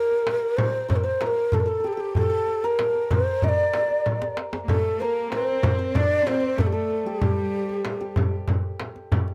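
A breathy, hollow ney carries the soulful, longing melody with vibrato and a slapback echo over shimmering hammered santur, a deep, saturated tombak and a small frame drum in this straight 95 BPM Persian modal piece in D dastgah shur, with a drum fill at 4.1 seconds before an earthy bowed cello section joins at 4.6 seconds, all captured close and dry.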